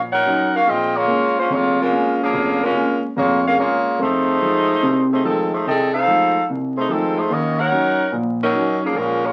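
Crackling like a very old 78 rpm record and bathed in wet club reverb, this brassy, sultry swing jazz fragment puts a clear saxophone section up front with light vibrato and a smooth top, carrying the melody over a warm concert grand piano whose deep bass and short sustain voice the Ebm7, Bbm7 and F7#9 chords.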